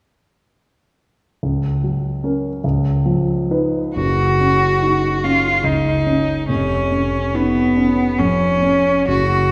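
Heard from further back in a concert hall with a wet 1.9-second reverb, this serene romantic classical fragment for cello and grand piano moves at 71 BPM in a rubato 3/4, tuned to A4 = 443 Hz, as the warm, deep-bassed concert grand opens alone at 1.4 s with short-sustained accompaniment over F#/C# and C#9 before a single bowed cello enters at 4.0 s, up front with a clear, intense, smooth-topped melody full of vibrato over chords of F#5 and C#/E#.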